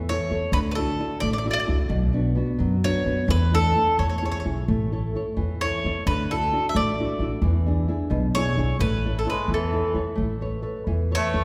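A round, double-strung mandolin carries a romantic, lively Italian serenade in A major at 87 BPM in 6/8, over fingerpicked nylon-string guitar and a woody, thumpy pizzicato upright bass, with a mellow cor anglais adding a soft second line with light vibrato from 9.3 seconds, all heard from further back in a reverberant recital hall.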